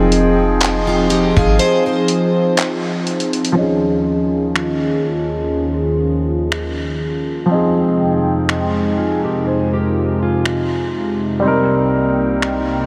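A warm baby grand piano sits up front in this sensual, moody contemporary R&B excerpt, its long-sustaining accompaniment rounded by a low-pass filter. Beside it, a hollow, airy pad holds mellow, flute-like sustained chords, thickened by chorus and breathing with sidechain pumping. A deep, round 808-style bass sounds only briefly, stopping at 1.6 seconds, while a dusty, gritty sampler-style kit of finger snaps, handclaps, hi-hat and a thumpy kick keeps a swung pulse, its kick dropping out between 1.6 and 3.6 seconds. From 0.9 seconds a picked, plugged-in steel-string acoustic guitar adds arpeggios with audible finger squeak, bathed in lush chorus and tape echo. A filter sweep runs through the later stretch as the chords move from Fm7 to Eb9sus4 and back before settling on Cm7, and a huge ambient reverb soaks the mix in a dreamy haze.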